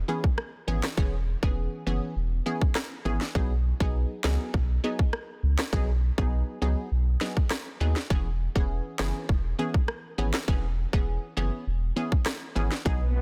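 Dry and tightly packed, this short cut from a longer dancehall track has a dense, heavily limited modern sound with little reverb. At 101 BPM in a straight 4/4, the mood is summery and bouncy, moving through E6 and B6 chords. A round, sine-like warm sub bass sits deep and up front, its fast attack giving way to a sustained, mellow tone. An electronic island pop drum kit, also up front, pairs a tight kick with a sharp snare and a rim click. Punchy chord stabs in sawtooth and triangle tones add a detuned, wave-folded brightness, with a filter pluck, a moving notch, chorus and sidechain pumping giving each short decay its bounce. At 13.0 seconds a brief electronic swell arrives at the very end.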